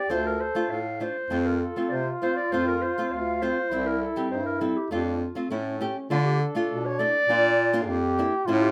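In a straight 2/4 pulse, this bittersweet, soulful klezmer fragment sets a dark, distant clarinet melody up front over a warm trombone second line with vibrato and scooped notes, fingerpicked nylon-string guitar accompaniment with audible finger squeak, and a clear, present bass clarinet carrying the bass, heard in a moderate studio reverb and moving into a new section at 6.1 seconds.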